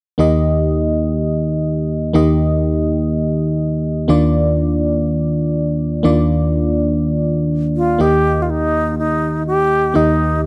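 A dry, close recording with a small-room ambience and a 1970s studio feel frames this glossy, nostalgic pop passage cut from a longer piece. A glassy, bell-like FM electric piano with a chorus effect and a noise layer carries the accompaniment from 0.2 seconds, its fast-attack, decaying notes sitting up front. At 7.8 seconds an airy, bright alto flute enters with a soft attack and expressive vibrato, adding a short melody over the final bars.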